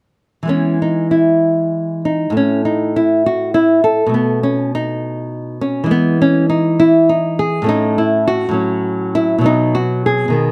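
A solo nylon-string guitar carries this serene, dance-like classical piece in a baroque style, its fingerpicked tone dark and small yet placed up front. The dance moves in 6/8 at 67 beats per minute, counted in dotted quarters, with a rubato feel that lets the pulse breathe. Set in E major, the guitar ranges from A2 to A4 and plays from 0.4 to 10.5 seconds. The harmony moves from E through a chordless stretch to B7, back to E, then to A, F#m/A and a closing B5 at 9.5 seconds. A moderate studio reverb gives the acoustic sound a modest sense of room, and the passage is cut from a longer piece.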